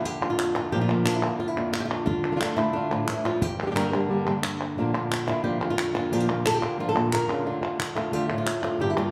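Mournful and passionate, this short flamenco excerpt moves at a brisk 178 BPM in a straight 4/4, cycling through Bb, Dm and Gm. An up-front fingerpicked flamenco guitar carries the melody while a second acoustic guitar, equally warm, punctuates with stabs, and crisp, close palmas hand claps enter at 0.2 seconds. The trio sounds like a band playing live together in one room, set in a wet, large studio reverb.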